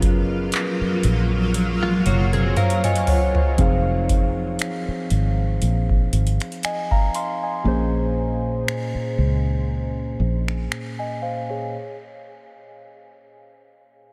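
Soaked in a huge, dreamy reverb, this late-night, moody contemporary R&B excerpt is carried by muted, felt-like synth keys with a soft, intimate tone, a round, foam-muted fingered electric bass and a booming analog drum machine whose deep kick, metallic hats, snaps, handclaps and toms sit up front. A blurred, evolving granular cloud pad holds chords until 3.5 seconds, while a bright, clean electric guitar plays compressed picked arpeggios with tape echo from 1.8 seconds, as the drums and keys add fills. The harmony moves from Gbmaj7 to Fm7 under a filter sweep, then settles on Bbm7 for a break at 7.7 seconds.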